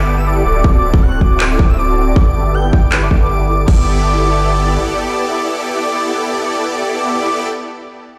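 A lush hall reverb and the character of a big sound system in a bare room surround this short future bass cut. It moves at 158 BPM in G major with a half-time feel and a light swing on the 16ths, and the mood is lush and playful. Huge, bright supersaw chords, built from detuned sawtooth unison and treated with ensemble chorus, tape echo and a low-pass filter sweep through the first 3.7 seconds, pump under sidechain alongside a deep, thick, saturated sine sub bass that sits up front until 4.8 seconds. High above, an airy, dreamy lead plays soft arpeggios, its detuned sine tone layered with noise and a sub octave, colored by chorus, vibrato and portamento. A hard-clipped electronic kick arrives at 0.6 seconds, joined by a trap kit of crash cymbal, finger snaps and handclaps, both re-recorded in a small room, before the drums fall away and the chords and lead carry on to the end.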